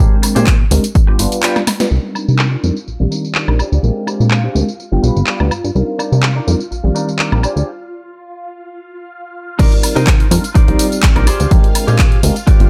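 This excerpt of sensual, nostalgic filtered disco house in C minor swings at 125 BPM. It opens with a worn, slightly out-of-tune tine electric piano, a clean, compressed semi-hollow guitar riff and a plucky, funky analog bass, all pumping beneath a low-pass filter, while a tape-warm house kit of punchy snare, handclaps, hi-hat and tambourine joins almost at once. At 1.9 seconds, swirling phased string-machine chords arrive under a filter sweep, and an airy, distant flute with gritty sampler character briefly carries the melody before a break gives way to a drop at 9.6 seconds, where the up-front electronic kick returns.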